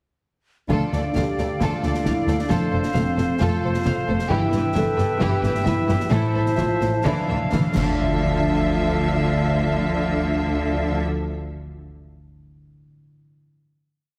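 Adventurous and swashbuckling, this heroic film-score cue at 132 BPM in D dorian sets a lush symphonic violin melody over a driving string ostinato from violas, a very quiet studio violin section and a rich cello section, with a woody double bass section doubling the bass line. Airy flute, clear oboe and distant clarinet sustain chords alongside a dark French horn section, ringing thumb-plucked harp arpeggios, and marching snare with bright cymbals and bass drum through 8.0 seconds. A timpani fill from 7.0 seconds leads into a final Dmadd9 hit, all in a reverberant scoring-stage space with a heavily compressed, radio-like sound.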